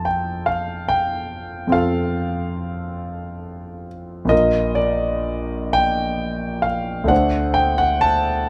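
Yearning and melancholic, this 8.5-second fragment of a romantic classical nocturne for solo concert grand piano moves in a slow, rubato 12/8 at roughly 39-49 dotted-quarter beats per minute, passing from F to Bb at 4.3 seconds and a bare D5 at 7.1 seconds, its intimate, natural, up-front tone spanning Bb1 to A5 with deep bass and audible action noise caught by close, detailed microphones in a light reverb.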